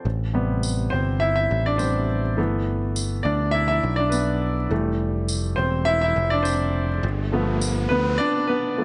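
A clear, intimate concert grand piano leads this hopeful piano-driven pop excerpt, its polished tone carrying deep bass and audible action noise as it moves through Am7, G6, Fmaj7 and G7 at 103 BPM with a light sixteenth-note swing. A punchy, up-front picked electric bass sits beneath it, while a jingly tambourine with a small-room character adds warm color. An electronic riser rises in the background from 6.8 seconds, and a moderate plate reverb gives the whole a gentle sheen.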